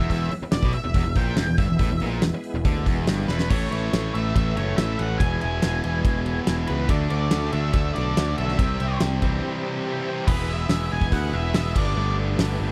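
Driving and sunny, this classic rock cut opens with a dark, fuzzy octave lead guitar soloing over a tight, picked distorted guitar riff, while a sludgy overdriven guitar sits in the background and a growly, punchy picked bass sits up front. A huge arena drum kit with a fat snare and big-room sound powers the groove, with a fill at 3.3 s. Underneath, a very quiet tonewheel organ holds shouting, lightly overdriven chords through a slow rotary speaker and chorus vibrato. The sludgy guitar drops out at 10.3 s after a brief break, and the close, dry 1970s-style sound keeps the band tight and immediate.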